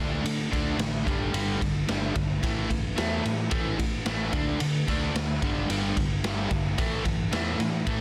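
A double-tracked, crunchy overdriven guitar and a growly, picked electric bass open this short hard rock excerpt together, with a raw garage drum kit joining at 0.3 seconds. The mood is anthemic and swaggering, with a straight 4/4 feel and power chords cycling through D5, G5 and A5 twice across eight seconds. The bright guitar riff sits up front, while the amped bass adds a punchy low end beneath it. The drums are gritty and saturated, with a punchy kick, a medium-tuned snare and ride cymbal in a stone room, their top rolled off for a darker, smooth character. The whole piece carries a small room ambience and a dense, heavily limited modern master.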